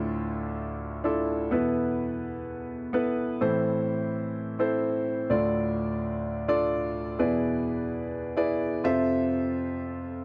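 A dry, close 1970s-style studio sound with light reverb frames a solo grand piano, polished, present and up front across D2 to E5, in an earnest, dramatic pop fragment cut from a longer piece at 127 BPM in 4/4 with a gentle 16th-note swing, opening on Dmadd9 and Esus4 before settling at 3.4 s into A harmonic minor through Am, Dm, E7 and Fmaj7.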